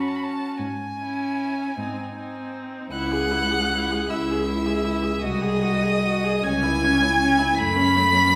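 The recording opens with all four strings of a quartet together in a slow, elegiac romantic movement in C# minor, a brief passage cut from a longer piece, moving at 52 dotted-quarter beats per minute in 6/8 with uneven, rubato pulse. The first violin carries the yearning melody high in its range, its clear, focused tone smooth at the top and colored by vibrato, while the second violin sings a supporting line further back in the blend. Beneath them the viola fills in the accompaniment with a rich, distant voice, and the cello anchors the bass, bowed close and up front with a full, resonant warmth. Harmony moves from C# minor through G# toward a G#7 over B# before returning to C# minor and settling on F# minor, with a second section beginning at 2.9 seconds. The players sit in a reverberant recital hall or church whose 1.5-second decay lends the whole passage a spacious, mournful glow.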